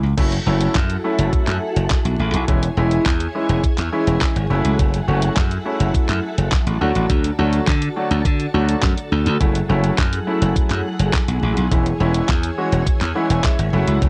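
A bright, punchy slap bass opens this confident, driving dance-pop excerpt in F# minor at 104 BPM, joined at 0.2 seconds by a thumpy, sampler-style 12-bit drum machine with a fat snare, handclaps, hi-hat and crash, a clear, intimate grand piano with audible action noise, and a vintage, warbling organ-like string ensemble holding soft-attack chords through ensemble chorus, while bass, piano and strings all pump to the sidechain over a cycle of F#m7, C#m/E and D, the drums carry a cassette-tape tint, a light reverb and a home-cassette sound wrap the mix, and the piano closes with a fill at 12.9 seconds.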